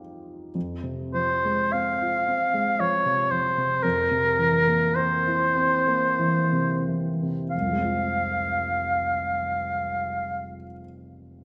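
Elegiac and solemn, this short passage cut from a longer romantic classical duo unfolds slowly in 3/4 at around 42-58 BPM, with a flexible rubato feel in F minor. A baby grand piano opens the passage at 0.0 s as accompaniment, ranging from F1 to F4 with a present tone and long sustain. The oboe carries the melody from 1.1 s, singing between Bb4 and F5 with light vibrato, a smooth top and a warm classical character, placed up front. The tempo slows during the first 7.5 seconds as the harmony moves from F minor to C7 over F and then settles back on F minor for a second section. Both instruments sit in a wet recital hall reverb that lends the close of the passage a lingering, spacious glow.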